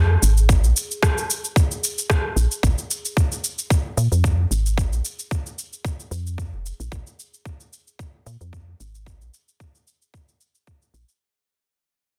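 A straight 4/4 pulse at 112 BPM drives this mystical organic downtempo excerpt, where a tight, overdriven electronic kick sits up front from 0.5 seconds beside overdriven electronic cabasa and rim click that carry a large-room character, while a soft, round, dark FM bass with a woody, fast-attack, decaying tone pumps under sidechain compression and a ringing bronze singing bowl, struck with a suede striker, hums with slow metallic beating in the background, all in a dry, dense, heavily limited mix that fades out across its full 11.2 seconds.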